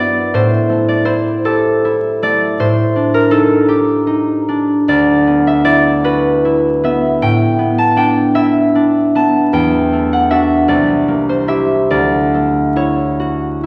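A bright, ringing concert harp opens this peaceful, serene classical excerpt for solo harp, fingerpicked in a slow, rubato 6/8 at 52 BPM in dotted quarters. It spans C2 to A5 and settles into D major from 4.9 s, moving through lush chords such as Am7, D69 and Dmaj9, set up front yet heard from further back in a wet recital hall under a layer of vinyl crackle.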